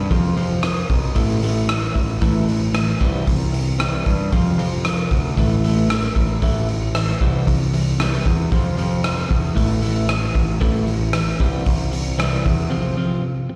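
A clean, compressed twelve-string electric guitar leads this dark, angsty stretch of quiet-loud alternative rock, picking arpeggios in its low register with a slapback echo. Beneath it, a growling picked electric bass adds overdriven grit, its direct-and-amped tone sitting close to the guitar in level. A raw garage drum kit plays hi-hat, kick drum and rim click; it sounds acoustic and up front, with a punchy kick, a rolled-off top and the smooth character of a bright stone room. The harmony cycles through F5, A5 and C in a straight 4/4 pulse. The bass stops at 12.7 seconds and the drums at 12.6, leaving the guitar alone for a short break until 13.6 seconds. The whole performance comes across like a live gig heard through the venue's PA, with light reverb and the roomy reflections of a recital hall, and the excerpt is cut from a longer piece.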